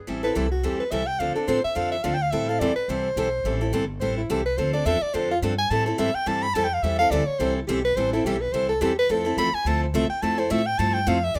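Bittersweet and virtuosic, this brief cut from a longer jazz manouche piece swings lightly at 213 BPM in A minor, moving through Am7, Dm7 and Fmaj7 harmonies. A warm, close-miked soprano saxophone carries the solo up front with light vibrato and a soft subtone, while a bright, freshly strung picked steel-string acoustic guitar accompanies just as prominently. Beneath them a pizzicato upright bass with gut strings adds a woody, thumpy low end, all heard in moderate studio reverb with the rough feel of a home demo mix.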